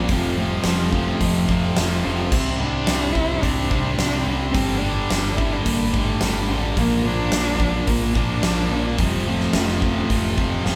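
Quiet-loud alternative rock at 108 BPM, cut from a longer piece, with a cathartic, brooding mood as the chords move from F through Csus2, Gsus2 and Bb back to F. A very quiet, twangy twelve-string electric guitar plays arpeggios only until 2.3 seconds, while a thick fuzz guitar sitting in the background and a tight distorted guitar drive riffs over a growling, overdriven picked bass. A dark, bowed solo cello sings the melody with vibrato and portamento, and a huge arena drum kit stands up front with a fat snare, punchy kick and bright cymbals, all captured as a band playing live in one room with light reverb.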